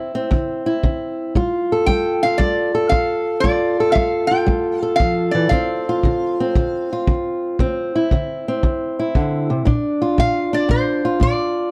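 Acoustic country blues in D minor at 116 BPM with a swung 4/4 feel, this soulful, smoky passage cut from a longer piece sets a dark, woody, boxy old ladder-braced acoustic guitar, fingerpicked on old strings and up front, over a distant, roomy, punchy kick drum played with brushes, while a warm, metallic, nasal lap resonator guitar played slide with fingerpicks carries the melody up front from 1.9 to 7.0 seconds and returns at 10.2 seconds, as the chords move from D7sus2 through Gsus2 and Dm9 to Bb inside a small room ambience.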